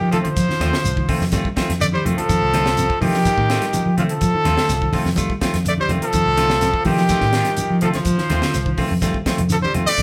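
Afrobeat at a straight four-four pulse, this funky, hypnotic passage is cut from a longer piece and sits on a single F7 chord throughout its ten seconds. A clear, up-front trumpet carries the melody with vibrato, while a raspy, gritty tenor saxophone plays a second line lower down, kept in the background. Beneath them a semi-hollow electric guitar picks very quiet arpeggios, and a dark, clean electric guitar adds picked stabs. A vintage fingered bass, foam-muted, round and punchy, anchors the low end alongside a tight funk drum kit with a high-tuned snare, hi-hat and tight kick. Very quiet congas with a thick skin and a grainy, mellow shekere fill out the percussion, and the band plays live together in one large studio room with a moderate reverb.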